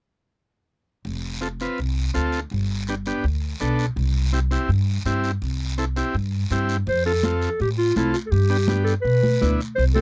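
Festive and sunny, this dry, close 1970s-style cumbia fragment opens with a raspy guiro, soon joined by a woody pizzicato upright bass and a buzzy, overdriven vintage combo organ, until at 6.9 seconds a classical-style clarinet takes up the melody over high-tuned, soft-handed congas.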